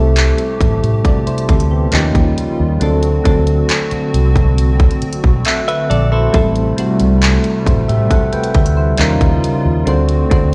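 Moody and late-night, this slow contemporary R&B passage at 68 BPM in A dorian pairs soft, rounded electric-piano-like synth keys with chorus and tremolo, a hollow, flute-like pad, a dark, foam-muted fingered bass and a trap kit with a hard-clipped kick, bright hats, handclaps and gritty 12-bit sampler texture, while the keys add a fill at 5.0 seconds and a twangy, direct-recorded clean guitar briefly arpeggiates through tape echo at 5.7 seconds over chords moving from Am7 to D#9 and D7, all set in a bare stone room.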